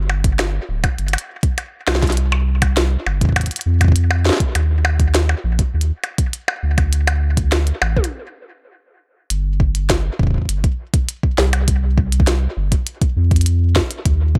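A round, deep sine sub bass sits up front in this melancholic, intricate IDM excerpt, its fast attack and sustained notes anchoring a G minor mood at 101 BPM in a straight 4/4. A glitchy drum kit of tiny snare, clicky hats, toms and small percussion blips sits close in the mix, its electronic, produced sound carrying a tape-warm grain and a dub echo. A soft electronic kick drum, also up front and tape-tinged, joins the kit. The whole piece is tuned slightly low, to A4 = 435 Hz, and set in a digital ambience with an echo-heavy mix. A stop from 8.1 to 9.3 seconds breaks the flow before a new section begins at 9.3 seconds and carries through to the end of the cut.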